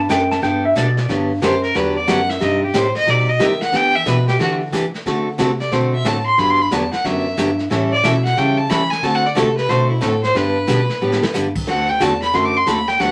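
A twangy pedal steel guitar opens this playful, cheerful western swing excerpt at 181 BPM in G major, taking a brief solo over a breathy bass clarinet bass line, a bright dreadnought acoustic guitar picking the accompaniment, and a jazz brush kit with dark cymbals and a boomy kick. At 1.4 seconds a clear, biting fiddle with light vibrato steps up front for a solo that carries through to the end, with a short drum fill at 11.0 seconds. The small-room kit and the other parts sit in a wet studio reverb, keeping the swung groove buoyant.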